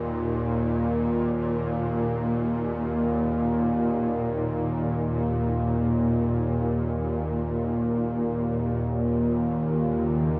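A tense, nasal bowed-like drone with a bright sawtooth edge and vibrato sits up front from 0.0 s, holding low between Eb2 and Bb2 in free time, until a deep, moody pad with chorus enters in the background at 9.4 s over a Dbsus2/Eb harmony, the whole dark, cavernous ambient fragment steeped in cathedral reverb and the warbling pitch drift of worn cassette tape.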